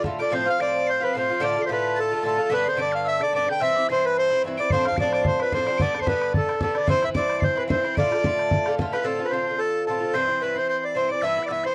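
A spirited, wild Celtic reel in D dorian at a brisk 220 BPM with a light swing, opening on a reedy, up-front accordion melody over picked, double-strung Irish bouzouki accompaniment and a brief moment of damped bodhran, joined at 0.2 seconds by an airy, chiffy tin whistle line high above, while the tight bodhran returns from 4.7 to 9.0 seconds in this dry, close 1970s-style studio recording with light reverb, cut from a longer piece.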